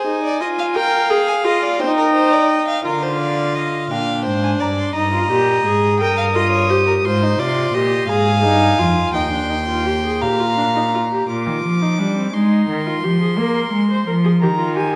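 Driving yet contemplative, this baroque-style fugue for string quartet in Eb major moves at 57 BPM in 6/8, with a rich first violin melody carrying light vibrato over a close, period-style second violin line that stops at 11.3 s, a reedy, up-front viola accompaniment, and a gut-string cello bass entering at 2.9 s, heard in a wet recital hall reverb with a dark, warm production and cut from a longer piece.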